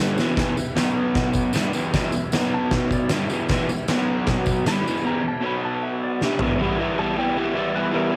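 Cut from a longer piece, this raw, menacing garage rock home recording on cassette carries light reverb, with an oversized, low-tuned acoustic drum kit sitting up front, its boomy kick, fat snare, dark cymbals and gritty, pumping big-room sound opening on a fill at 0.2 seconds. A bright, double-tracked overdriven guitar picks a crunchy riff between Em and B5 chords, while a dark, compressed lap steel in the background plays a clean slide melody with volume swells and a cassette-tape tint. A very quiet vintage combo organ holds reedy chords with heavy vibrato and a jingly, saturated tambourine adds percussion, before a second drum fill leads into a new section at 6.6 seconds.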